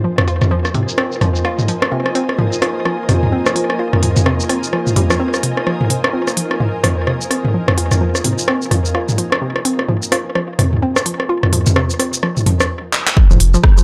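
Cool and sparse, this minimal techno excerpt in F minor at 128 BPM with a 16th-note swing sets a hollow, bouncy square-wave pluck riff with chorus, phaser, tape echo and sidechain pumping over a cloudy, evolving granular pad, a faint pulsing gated texture, an overdriven organic electronic kit of rim clicks and toms, and a crisp-hatted garage kit of handclaps, hi-hat, rim click and shaker. A filter sweep runs across the Fm7 opening until a stop at 12.7 seconds, and a drum fill at 12.9 seconds leads to a punchy analog kick at 13.2 seconds, followed at 13.3 seconds by a thick, saturated sine sub bass on F, all in a dry, gritty hardware recording with light reverb.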